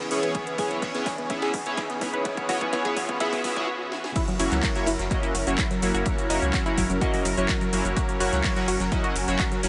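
Glossy, retro polysynth stabs sit up front in this expansive, euphoric progressive house excerpt, pumping against the sidechain and trailing tape echo over a thick, airy unison pad with chorus and phaser and a background of detuned sawtooth pluck arpeggios. Both pad and pluck are filter-swept through a build-up with a drum fill and a very quiet riser, then a short break at 3.7 seconds gives way to the drop at 4.2 seconds. An overdriven, punchy electronic kick, a house kit with cracking snare, metallic hats, claps, shaker and crash, a round, deep analog bass and a very quiet, gritty acoustic indie kit drive it in straight four, all under light reverb.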